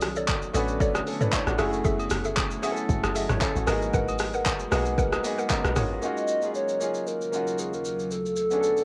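Amapiano with a late-night, soulful mood, cut from a longer piece and heard as a home recording on cassette with light reverb. A deep, moody pad of detuned sawtooth and sine with a sub octave sustains dark chords throughout, pumping under sidechain, while an up-front deep house kit with a deep kick, handclaps, hi-hat, rim click, shaker and toms drives the groove with a tape-warm, small-room character. For the first 6.0 seconds a deep, round log drum bass and a woody, warbling mallet-like synth pluck playing stabs carry the drop, with agogo bells and woodblock sitting in the background. A clear baby grand piano enters at 0.5 seconds as accompaniment and adds a fill near the end. At 6.0 seconds a hollow, soft clarinet-like synth lead with vibrato carries the melody over chords such as Ebm9 and Bm9.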